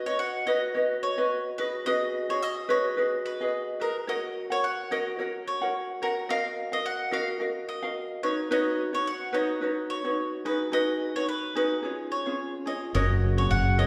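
Light, fingerpicked ukulele opens this easy-going, heartfelt acoustic pop fragment with a gentle sixteenth-note swing, joined almost at once by woody, double-strung mandolin arpeggios, both ringing in a wet recital-hall reverb before a round, punchy fretless electric bass arrives at 12.9 seconds and a smooth, detuned analog pad with chorus settles in at 13.0 seconds.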